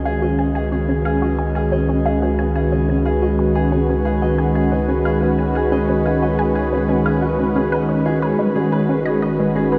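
Cosmic and expansive, this short cut from a longer piece of ambient, sequencer-driven space music moves at 90 BPM in a straight 4/4. Up front, a sweeping resonant pad holds sustained chords throughout, its airy, detuned sawtooth tone dressed in chorus and shimmer reverb, with a slow attack and long release. A concert harp plays ringing, thumb-plucked arpeggios with an acoustic character, carried on tape echo and shimmer reverb. Beneath them, a deep, round sine sub bass anchors the low end, while a juicy, squelchy blip pluck sits in the background from 0.1 s, its riff filtered through phaser, tape echo and shimmer reverb. The harmony rests on C#7sus4 before shifting to G#m7 at 8.4 s, all set in a vast, echoing cathedral space with a reverb tail of 5.6 s.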